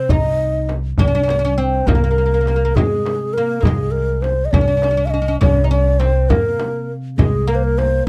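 A breathy, mellow low ney carries the melody up front, its vibrato and soft attack leading this festive, passionate excerpt of a Persian modal ensemble piece in C dastgah shur, set in a straight 6/8 at 68 BPM. Beneath it, a plectrum-plucked fretless oud with double strings adds a woody second line, while a pizzicato upright bass with steel strings sits prominently on the low end. A deep, dry tombak in the background and a frame drum heard in a small room supply the percussion, and the whole recording has light reverb and a dark, warm production.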